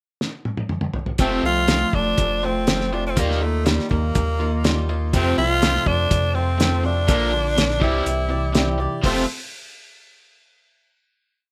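Folk rock and heartland rock with a hopeful, jangly mood, opening with a drum fill on a muffled, cloth-damped kit before a raspy, close-miked tenor saxophone sings a motif-based melody up front over bright picked acoustic guitar with finger squeak, palm-muted double-tracked overdriven electric guitar, and a smooth sine sub bass locked to the kick drum, all set in a small room in a rough home demo mix.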